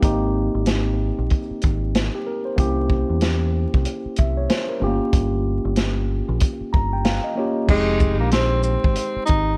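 A swung 94 BPM boom-bap groove in 4/4 opens this moody, gritty hip-hop excerpt in F minor, with a vintage acoustic kit of punchy kick, medium-tuned snare, hi-hat, shaker and dark crash set up front in a small room beside a deep, round dub bass played with the fingers. A mellow tine electric piano, clean and filtered through a cassette-tape tint, moves through Abmaj7, C7b9 and Gm7b5 before the harmony settles on Fm9. At 7.7 seconds a breathy tenor saxophone takes a jazzy solo with vibrato and scooped notes, all over a worn, warbling tape haze with vinyl crackle and drifting pitch.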